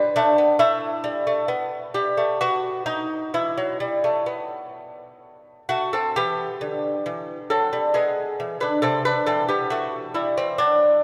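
A classical, baroque-style dance in 3/4, this grave and introspective 11-second excerpt unfolds at 66 BPM in E minor, with uneven beats and free rubato, tuned to A4 = 444 Hz. A solo lute plays throughout, fingerpicked and up front, its delicate gut double strings, some doubled at the octave, giving a warm tone that ranges from C3 to B4. A long church reverb surrounds the instrument, and the opening phrase returns at 6.2 seconds, shifting through Em, E7/G# and Am/C.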